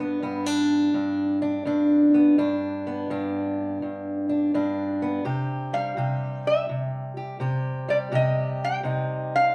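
A live-in-one-room recording with a wet studio reverb and a slightly lossy, compressed finish gives this fragment of acoustic country blues a gritty, rollicking character. A boxy, bright parlour steel-string guitar with fresh strings is fingerpicked up front for the full 9.5 seconds, laying down a swung accompaniment in four. A lap resonator guitar, played slide with fingerpicks and sitting just as close, sounds a metallic, nasal melody in a high register. It appears only for a brief moment at the start, then returns at 5.7 seconds to carry the line to the end. Underneath, the harmony moves from G to C and darkens to C minor near the close.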